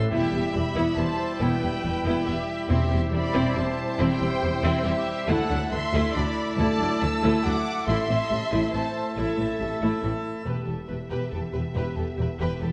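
In a straight 3/4 at 139 BPM, this dark, dramatic cinematic cue in E minor carries a lush, high violin melody over a focused second violin line, smooth vibrato violas, background cellos and distant, rich double basses, with a very quiet, mellow horn section holding chords and a brilliant, baroque-voiced organ plenum sustaining chords until 10.5 s, while a close, dry timpani sounds from 2.7 to 3.3 s, the whole set in a wet scoring-stage reverb and the warbly pitch drift of worn cassette tape.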